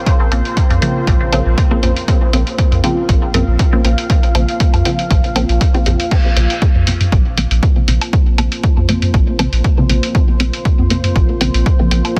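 Hazy and nocturnal, this dub techno excerpt moves at 119 BPM in 4/4 with a light 16th-note swing, settled in Bb minor on a Bbmadd9 chord. A deep, moody ambient pad built from detuned sawtooth and sine layers holds sustained chords from the start, softened by chorus and its own reverb and pumping under the sidechain. A punchy, overdriven electronic kick sits up front, joined by a muffled, pitched-down sampler-style kit whose compressed crash and hi-hat carry a tape-like haze. A round sine sub bass and a dark, full-bodied sawtooth chord stab with a filter pluck, phaser and dub echo both enter at 0.3 seconds, the stab's filter sweeping through the second half from 6.1 seconds. Dry, analog-toned electronic woodblock and toms sit in the background with dub echo, while the dense, heavily limited master wraps the parts in a digital ambience.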